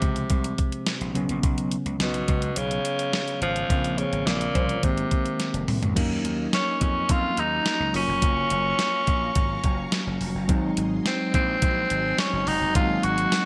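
A raspy tenor saxophone carries the melody up front in this glossy, nostalgic 1980s-style pop excerpt at 106 BPM, over bell-like tine electric piano, gritty overdriven slap bass and a thumpy 12-bit drum machine with gated reverb, while a nasal polysynth stab lands at 4.5 seconds, a band accent and drum fill lead into the second section, and a silky string machine with ensemble chorus sustains chords from 6.0 seconds in a bright digital production with plate reverb.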